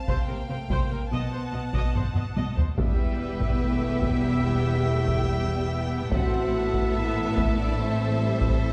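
This is a cinematic, epic orchestral film score in E minor, moving at a measured 72 BPM in 4/4 with a heroic yet dark mood, cut from a longer piece. Two bowed violin sections carry the melody and a second line with vibrato, one smooth and even, the other focused and distant, while a mellow French horn section holds sustained chords with a soft attack. Beneath them, a lush viola section in the background adds expressive accompaniment with portamento, a close cello section and a soft-attack double bass section anchor the bass, and an up-front taiko ensemble struck with heavy sticks drives the pulse, capped by a drum fill from 2.0 to 2.8 seconds. At 2.8 seconds the harmony lands on E minor as a background string section, a very quiet trombone section and a bright solo trumpet playing stabs join in. The chords travel from Csus4 and B7 to Em and then Am. A wet scoring-stage reverb places the listener further back in the hall, giving the ensemble a spacious, grand sound.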